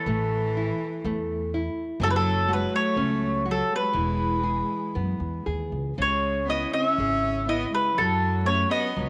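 Passionate and mournful, this short cut from a longer fado-style ballad drifts in rubato as an up-front, round-toned mandolin picks the melody on its double strings, a rich bowed cello with light vibrato sings a smooth second line, a dark, fingerpicked nylon-string guitar accompanies, and a woody pizzicato upright bass enters at 0.1 seconds, all in a studio with light reverb.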